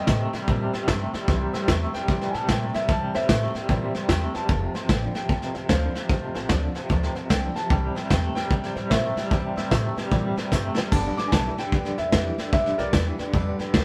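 Rockabilly with a retro, upbeat swing, this brief excerpt from a longer piece has a small band playing live together in one room, with moderate studio reverb. A clear, natural upright piano carries the melody, while a twangy electric guitar with tremolo repeats a low riff beneath it. Pizzicato upright bass on gut strings gives a thumpy, dark foundation, and a picked dreadnought steel-string guitar sits bright and full-bodied in the background, finger squeaks audible. A detuned, jangly honky-tonk piano adds very quiet accompaniment. Up front, a vintage brush kit sounds muffled and lo-fi, with a punchy kick and medium-tuned snare, and it plays a short fill at 10.5 seconds as the chords move from C through F back to C and on to G.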